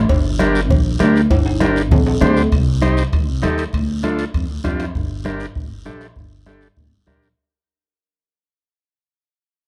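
A woody, pizzicato upright bass sits up front in this short, danceable cumbia excerpt, its steel strings giving a passionate push under a straight 4/4 groove. A vintage combo organ supplies reedy, clean accompaniment soaked in heavy vibrato, moving through minor chords before settling on an added-ninth colour. Underneath, a soft-beater bombo sounds distant, as if in a large room, while thick-skinned, medium-tuned congas played with hard hands stay close, dry and in the background, and a raspy guiro scrapes quietly in a live room. Ringing, metal-shelled cowbell and timbales come across compressed and saturated, then drop out at 4.9 seconds. A drum fill arrives around 1.3 seconds, and from 2.5 seconds the music moves into a new section as a fade-out begins, all within a dry, close recording with a 1970s studio character.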